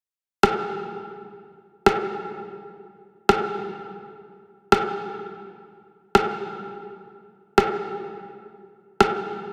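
This R&B excerpt sits at 84 BPM in 4/4, with a 16th-note swing that gives it a loose, unhurried lean and a moody, late-night air. The only part is an electronic rim click, which enters at 0.4 seconds and carries the rhythm through to 9.2 seconds. It has a produced, electronic character yet sounds re-recorded in a small room, and it sits up front in the mix. Around it, a lush hall reverb with a 2.2-second decay gives the recording a wet, spacious sheen. The master is dense and heavily limited in a modern style, and the passage is clearly cut from a longer piece.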